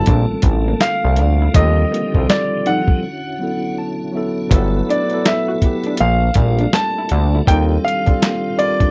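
R&B and neo-soul with a relaxed, sensual, swung feel, cut from a longer piece and captured dry and close in a 1970s-style studio. A clear, intimate concert grand carries the melody up front, with audible action noise, over a worn, slightly out-of-tune tine electric piano through its built-in speakers, a piping tonewheel organ holding chords through slow rotary speaker and chorus vibrato, and a lo-fi, slightly broken-up electric guitar picking a second line in the background. A fat, nasal, detuned analog bass with a filter sweep and a gritty, tape-warm sampler-style kit of thumpy kick, snare, hi-hat and handclaps sit up front, and a break from 3.0 to 4.5 seconds features a lightly overdriven fill on the electric piano before the bass drops out at 7.8 seconds.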